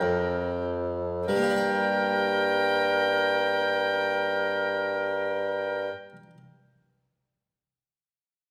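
Grave and solemn, this short cut from a baroque-style sonata movement moves slowly in 3/4 at 47 BPM with rubato in G minor, tuned to A4 = 443 Hz, and it slows down over its first 1.3 seconds. A warm oboe with light vibrato and a soft attack carries the melody, while an up-front, nasal, reedy violin with a gut-string tone and an airy bow plays the second line, and a mellow, roomy bassoon holds the bass; these three stop at 5.9 seconds. A plucked, full-sounding harpsichord with two sets of strings supplies the continuo accompaniment until 6.4 seconds, heard in a moderate recital hall reverb.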